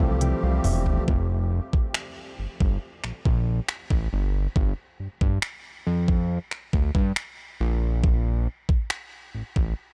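The recording is close and dry, with little reverb and a faint mains hum beneath it. This romantic, dreamy contemporary R&B excerpt opens on a clean tine electric piano fill, heard through its built-in speakers, alongside brief reedy, close-miked accordion chords in shimmering musette tuning. A trap drum kit enters at 0.2 s with a fill of finger snaps, hi-hat, kick and toms, its knocking kick and crisp hats sitting up front with a tape-warm, produced character. From 1.1 s the piece settles into a break carried by the drums and the fat analog bass, whose thick, detuned sawtooth tone is saturated and evolving, with a filter pluck, a fast attack and a sustained body. The harmony passes from a major-ninth chord to an add-nine chord and a bare power chord before the chords fall away entirely.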